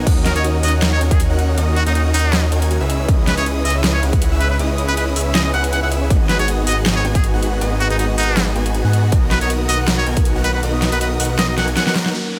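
Future bass at 159 BPM in a half-time, lightly swung feel, this dreamy, lush drop sets a nasal, brilliant straight-muted trumpet melody with vibrato and tape echo over huge detuned supersaw chords and a thick, chorused saw bass, both pumping to the sidechain, while a punchy up-front kick and a big-room kit with a huge snare and metallic hats drive the groove, faint airy lead and soft round pluck arpeggios and very quiet bowed strings fill the background through D#m7, C#m9, G#m7 and Bmaj7, and a drum fill at 11.6 seconds gives way to glassy chorused keys and a downlifter at 12.1 seconds.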